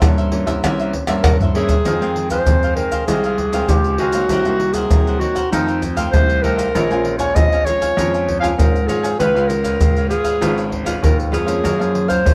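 Yearning yet lively, this short cut from a longer samba and choro piece moves at 98 BPM in a straight 4/4 feel in F minor. A soft-attacked clarinet with a smooth top carries the melody in a classical style, entering at 1.2 seconds up front with plate reverb, just as a percussion fill leads into the main section at 1.8 seconds. Underneath, a grand piano holds the bass line with an intimate, natural tone and audible action noise, while a dark, small-sounding nylon-string guitar is fingerpicked and a crisp cavaquinho is picked in the upper register. Maracas, a tight surdo, pandeiro and tamborim sit up front with soft hands and a small-room acoustic character. The harmony travels from C7b9 through Fm7, Cm7b5, F7, Bbm7 and Db7 before landing on Gbmaj7, and the whole recording carries a worn, warbling cassette-tape pitch drift within a moderate studio reverb.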